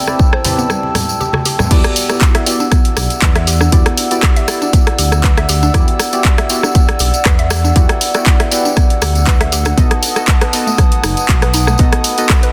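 A swung 4/4 groove at 119 BPM drives this earthy, hypnotic afro house excerpt in E minor, where a punchy, up-front electronic kick and a house kit of handclaps, warm hats, rim clicks and crash join a jingly tambourine and distant, low-tuned congas that drop out at 1.7 seconds, just as a smooth gliding sawtooth bass arrives with the drop beneath a moody, nasal analog pad, deep mellow chord stabs with a filter sweep and a woody, round mallet-like pluck arpeggiating in the background, the pad, stabs and bass pumping to the sidechain as the chords move from Cmaj7 to Em9 and then B7 at 9.8 seconds, all in a dense, heavily limited mix with light reverb.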